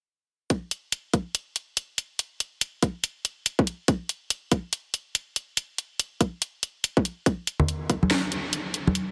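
A half-time groove at 142 BPM with 16ths swung at 61% drives this brooding, cavernous deep dubstep fragment, cut from a longer piece. From 0.5 seconds a tight, overdriven electronic kick sits up front with a garage drum kit whose cracking snare and hi-hat carry the same grit, the kick thinned by a high-pass filter. Bright, close congas struck with hard hands arrive at 7.6 seconds, trailing a dub echo, while a huge ambient reverb and a dense, heavily limited modern master give the sound its depth.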